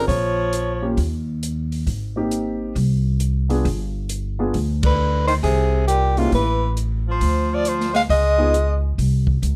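A breathy soprano saxophone with subtone, vibrato and scooped notes carries the melody up front in this moody, swinging small-group jazz excerpt at 135 BPM, joined by a distant, roomy tenor saxophone playing a soft-attacked second line, both sounding briefly at the start and returning with a band accent at 4.8 seconds, over mellow, shadowy upright piano accompaniment that stops at 8.5 seconds, woody pizzicato upright bass and a small-room drum kit with dark cymbals and a boomy kick, all set in a lightly reverberant, warm production.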